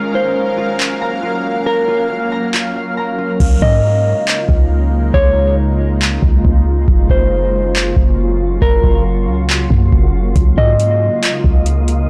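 Atmospheric cloud-rap with a half-time hip hop feel, dreamy and blissful, this piece opens on a shimmering, ethereal pad with sidechain pumping, ringing thumb-plucked harp arpeggios through delay, and a faint, breathy wind-like texture, while a dark, clean electric guitar melody enters at 0.2 seconds. A booming analog drum machine, overdriven and up front with a deep kick, metallic hats, handclaps and crash, arrives at 0.8 seconds, and a clean, sine-like 808-style bass with a decaying tone joins at 3.4 seconds as the hi-hats drop out for a stretch and the harp stops soon after. The whole recording sounds blown-out and overdriven with light reverb, its chords moving between Gbmaj7 and Db69.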